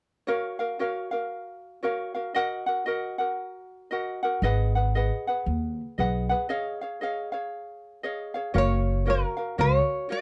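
Hawaiian music at 116 BPM in 4/4 with a lilting swing, languid and sunny in F# major, heard as a short excerpt cut from a longer piece. A bright, fingerpicked ukulele carries the accompaniment from 0.3 seconds through chords such as F#maj7 and G#m7, joined at 4.4 seconds by a woody, plucked upright bass on steel strings, and a light tenor ukulele takes the melody at 8.6 seconds. The sound is dry and close, like a 1970s studio, with every part placed up front.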